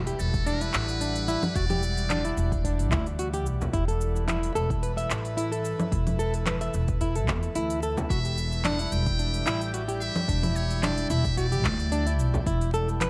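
A buzzy, brilliant metal-muted trumpet with vibrato and 12-bit sampler grit and delay sings a forceful melody at the opening and returns at 8.1 s in this earthy, meditative organic downtempo piece at 110 BPM in E minor, over an Em9 chord from a breathy, bright chorused pad with sidechain pumping, fingerpicked flamenco guitar arpeggios through digital delay, up-front woody pizzicato upright bass, a deep tape-warm electronic kick, an afro-pop kit of crisp hi-hat, cabasa, congas and handclaps with a light 16th swing, very quiet hard-handed frame drum hits, and a faint electronic impact at the start.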